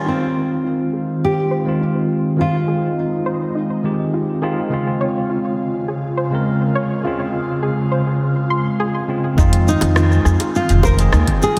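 A clean tine electric piano sits up front with delay in this smooth, wistful sunset chillout cut at 103 BPM in F minor. A thumb-plucked nylon-string guitar melody through tape echo plays alongside it, along with a mellow, round pluck arpeggio carrying chorus, 12-bit sampler grit and delay, and a breathy, detuned pad with chorus and phaser; filter sweeps shape both the pad and the arpeggio until 9.4 seconds as the harmony moves from Fm7 to Dbmaj7. At 9.4 seconds a woody pizzicato upright bass with tube saturation arrives with a deep, layered electronic kick, a deep house kit of congas, hi-hat, rim click and shaker, and tight, very quiet high-tuned bongos, all set in a lush hall reverb that gives the mix a dreamy glow.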